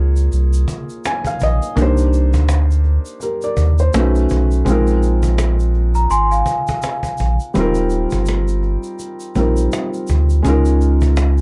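A felt-muted upright piano and a deep, round sub bass open this melancholic, nostalgic lo-fi hip hop excerpt together, with a grainy egg shaker and a snappy cajon joining within the first half-second. At 83 BPM in 4/4 with a gentle swing on the sixteenths, the soft, intimate piano sits up front behind a low-pass filter, adding a short fill between 0.7 and 1.8 seconds as the harmony moves from Db69 through Cm9, B9 and Bb9sus4. The sine-like sub bass holds sustained notes, while the cajon's snares rattle in a live room and the vintage, band-limited shaker stays faint underneath. At 6.0 seconds a large celesta briefly takes a bell-like second line, delicate and ringing, softened by a low-pass filter and drifting through tape echo and plate reverb before it stops at 7.4 seconds. The chords settle onto Eb69 and return to Db69, wrapped in a dark production with light reverb.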